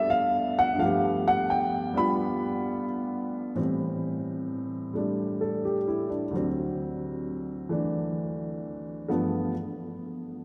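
Bathed in a wet cathedral reverb with a 4.3-second decay, this relaxed, swinging solo jazz excerpt features an intimate, woody upright piano up front, its boxy tone, long sustain and audible action noise carrying it from G9 through Am7 and D7 back to G9 before it stops at 9.5 seconds.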